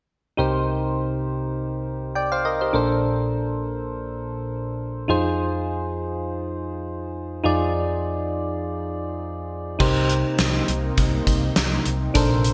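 Bright, polished 1980s-style digital production bathes this romantic, uplifting pop excerpt in lush hall reverb, with a touch of small-room ambience underneath. Soft electric-piano-like synth keys open alone at 0.4 seconds, sitting up front with a round, gentle, detuned tone shaped by chorus and a filter sweep, each note striking quickly and then decaying over chords moving from Cm7 to Bbmaj9 and Fm7. At 9.8 seconds the arrangement fills out as the harmony returns to Cm7: a thick, sawtooth unison pad swells in with a slow attack and sustained chords, tucked in the background behind the keys. A vintage, foam-muted fingered electric bass joins at the same moment, dark, amped and punchy. The gated drum kit arrives there too, up front with a fat snare, tight kick and bright cymbals in an airy, gated stone room, and all four parts carry on until the cut at 12.5 seconds.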